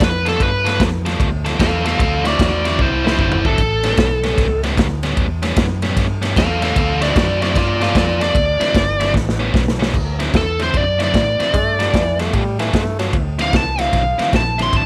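A swung shuffle at 151 BPM drives this soulful, gritty electric blues excerpt, where a biting, overdriven lead guitar solos up front over a picked rhythm guitar riff, a round, punchy foam-muted bass and a crunchy, saturated small-room drum kit with dark cymbals and fills at 2.8 and 9.1 seconds, before a close-miked subtone tenor saxophone with light vibrato adds a brief second line at 11.5 seconds, moving through G9, D9 and A9 chords in light reverb.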